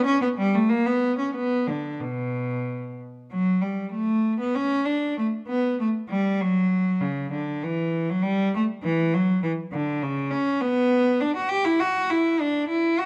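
Flowing and grave, this excerpt from a baroque-style classical suite movement features a single bowed cello in 3/4 at 90-102 BPM. Played with rubato, light vibrato and a nasal, gut-string period tone, it moves from B minor to D major at 3.3 s, captured up close in fine detail with light reverb.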